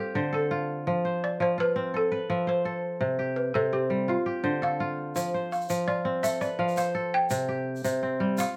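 A woody, round balafon struck with soft rubber mallets carries a joyful, flowing melody throughout this short excerpt of West African traditional string and xylophone music, set in F lydian at 112 BPM in a straight 12/8. Alongside it, an up-front, fingerpicked kora spins ringing, crisp arpeggios over chords moving between Dm, F and C5. A grainy, distant egg shaker joins at 5.2 seconds, all within a moderate studio reverb.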